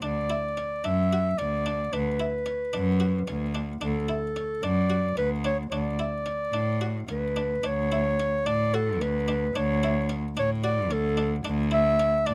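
A warm, classical-style clarinet carries the melody up front in this playful, restless piece of contemporary chamber music, set in 7/8 at 221 BPM counted in eighths, in D major and tuned to A4 = 439 Hz. Beneath it a buff-stop harpsichord plays muted, lute-like arpeggios in a dry, airy Flemish style, while a single cello supplies a rich, smooth bowed bass with vibrato, placed close and up front. The harmony moves from Bm/D to Dmaj7(no3) at 5.7 s, and a new section begins at 7.6 s in this short passage cut from a longer piece, captured with close, detailed microphones and light reverb.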